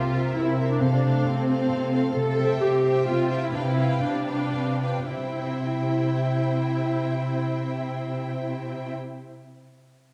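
Lively and spirited, this short classical fragment in C major moves in a rubato 3/4 at 105-135 BPM and eases back between 1.5 and 5.1 seconds, as a focused, vibrato-rich violin section carries the melody above a smooth second violin line, with a clear, up-front viola section and a rich cello bass beneath, while a ringing, fingerpicked concert harp plays arpeggios in the background and lingers past the strings until 9.6 seconds, the whole set in a dark, warm concert hall reverb.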